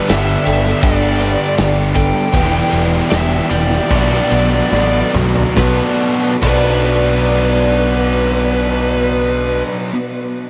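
A straight 4/4 pulse at 70-82 BPM slows through the opening, with a loose, punchy indie drum kit and a jingly, close tambourine in the background, then a drum fill from 4.7 s before both stop at 6.7 s, in this melancholic, hazy B minor shoegaze and dream pop excerpt moving through Gadd9, Em7 and Bm7. A growling, overdriven electric bass sits up front beneath a dark thick fuzz guitar, a biting overdriven guitar with reverse reverb, a bright double-tracked distorted electric guitar, and a boxy, shimmering twelve-string acoustic playing octave-doubled arpeggios through lush chorus and delay. Over this wall of riffs, a compressed fuzz lead guitar sings the melody with delay, all bathed in a huge, dreamy ambient reverb.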